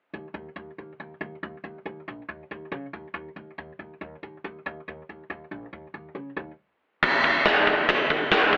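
An upright bass opens this aggressive, heavy metal excerpt at 139 BPM, its woody, thumpy pizzicato on steel strings sitting faint in the mix between Bb1 and Db3. After a brief stop at 6.6 seconds, a big rock drum kit enters up front at 7.0 seconds, with a tight kick, a medium-tuned snare, ride and crash cymbals, and a roomy, mid-forward sound with a rolled-off top. The recording carries light reverb and a telephone tone, tuned slightly sharp to A4 = 441 Hz.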